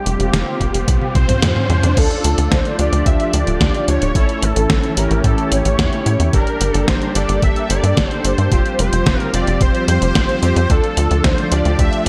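A straight 4/4 pulse at 110 BPM drives this nostalgic, nocturnal synthwave excerpt in D minor, where a knocking, tape-warm electronic kick enters at 0.6 seconds beneath a detuned 8-bit drum machine with an up-front snare, toms, hi-hat, crash and gated reverb, a punchy, nasal sequencer bass with tube saturation and sidechain pumping, a silky analog string pad sitting in the background, a thick, bright wave-folded unison lead carrying the melody with vibrato and tape echo, a background riser over the opening 2.0 seconds, and fat, brassy synth stabs arriving at 2.0 seconds with chorus and digital delay.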